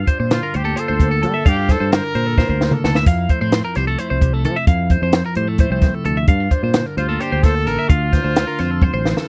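Wistful and intricate, this short excerpt of math rock and Midwest emo moves in a straight 7/8 over a Gm9, Fmaj7, Gm9 and Dm7 progression. A bright, twangy twelve-string electric guitar picks clean, compressed arpeggios up high, while a dark, fingered electric guitar fills in the accompaniment in the background. A fingered electric bass sits round and punchy beneath them, and a compact cocktail drum kit stays up front with a tight kick, a high-tuned snare and dusky cymbals, adding a fill around 2.4 s. A trumpet carries the melody from 0.3 s with vibrato and a distant, roomy pop-style tone trailed by tape echo, then returns at 7.0 s. The dry, close 1970s-style studio sound carries little reverb.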